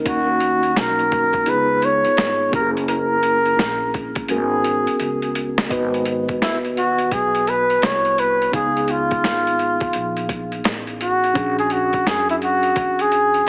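Jazz-hop with a smoky, mellow mood, this short cut from a longer piece rides a lazy, swung boom bap groove in 4/4. A clean, mellow tine electric piano heard through its built-in speakers lays down soft extended chords, while a woody, growly upright bass plucks pizzicato low beneath it. The sampler-style drum kit sounds pitched down and gritty, with a thumpy kick, a medium-tuned snare and hi-hat carrying a tape-warm, small-room character, and it plays a fill from 4.3 to 5.7 seconds. Up front, a breathy vintage flugelhorn carries the melody with light vibrato and scooped notes, stepping into a jazz-style solo at 5.7 seconds over the second section's chords. Light reverb and heavy compression give the whole recording a squeezed, AM-radio tone.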